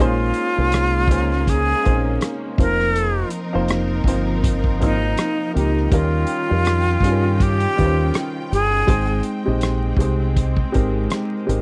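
Dry and close, this short cut from a longer R&B and neo-soul piece has the feel of a 1970s studio session, with vinyl crackle under a late-night, introspective mood and a gentle swing on the sixteenths. A breathy, bright jazz flute carries the melody up front, expressive and close-miked with vibrato and a soft attack, until it drops out at 9.2 seconds. Beneath it, an upright piano plays woody, slightly detuned accompaniment with audible action noise, while a clear, distant string section holds lush, bowed chords. A deep, dark fingered electric bass sits up front with a round, punchy tone, and a soul drum kit comes in at 0.3 seconds with a tight kick, hi-hat and rim click in a small-room sound with a rolled-off top. The harmony moves from Bbm11 through F7sus4 and Eb9 to Abmaj7.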